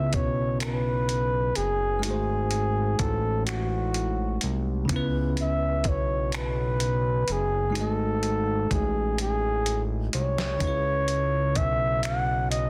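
A dark, close-miked flugelhorn opens this slow, yearning late-night R&B excerpt in C# minor, carrying a jazz-style solo melody with scooped notes and a slapback echo, joined at once by a bell-like tine electric piano treated with phaser and a fat analog bass that sits up front. A dusty soul sampler-style kit slips in at 0.1 seconds with finger snaps, hi-hat, a thumpy kick and a gritty, soft-clipped snare, its sound compressed and re-recorded in a large room. The groove moves in a straight 6/8 at 42 BPM, counted in dotted quarters, as the harmony rocks between C#m7 and G#7b9 before settling back on C#m7. A drum fill runs from 9.2 to 10.6 seconds, leading into that final return to the tonic chord. Light digital ambience surrounds the parts, and the dense, heavily limited modern master keeps the whole piece close and full.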